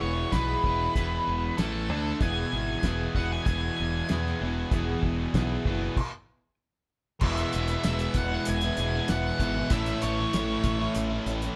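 Recorded with a live, in-one-room feel and moderate studio reverb, this confident, swaggering classic rock excerpt at 96 BPM in straight 4/4 sets a dark octave-fuzz lead guitar melody over riffs from a bright, overdriven electric guitar and a hollow-body overdriven semi-hollow guitar, a modern, direct fingered electric bass, a cloth-damped, thuddy drum kit with a fat snare, tight kick and dark cymbals, and a full-bodied jumbo steel-string acoustic in the background with audible finger squeak, until a stop at 6.0 s, after which a double-tracked, sludgy distorted guitar joins the riffing at 7.2 s as the chords move between E and A.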